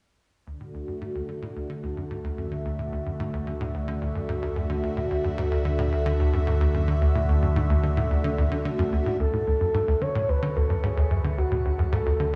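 A tight, punchy sequencer bass drives this expansive, cosmic piece of ambient space music. Its sawtooth-and-square riff is shaped by a filter pluck and a moving notch, sits up front, and carries subtle chorus, shimmer reverb and analog delay. From 0.5 seconds a phased analog pad holds a sustained Dadd9 chord, its detuned, wave-folded tone swirling and evolving through phaser, chorus and shimmer reverb. Beneath it a fat analog bass fades in on a low D, thick and saturated with a filter sweep yet mellow in character. At 9.2 seconds an expressive synth lead enters with a smooth, dark melody with vibrato, treated with the same chorus, shimmer and delay as the riff. The music moves at 110 BPM in a straight 4/4, framed by a moderate plate reverb and small room ambience, and is cut from a longer work.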